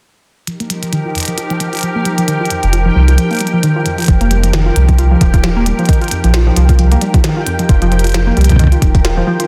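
A densely limited modern mix with light reverb sets this eerie, glitchy IDM fragment, cut from a longer piece, at 133 BPM in 4/4 with a gentle 16th-note swing. From 0.5 seconds a glassy FM pad holds ethereal, slow-blooming chords with ensemble chorus and its own reverb, starting on F9sus4, while a warbly, dusty pluck built from pulse, sawtooth and noise layers plays wave-folded arpeggios through chorus and tape echo under a filter sweep. A glitchy drum kit of clicky hats and a tiny, softly clipped snare, re-recorded in a large room, ticks along beneath, joined by a bubbling texture of detuned, resonant sawtooth with random filter steps. A round sine sub bass arrives up front at 2.6 seconds, and a soft electronic kick drum lands at 4.1 seconds as the second section begins, anchoring the hazy, lo-fi shimmer above.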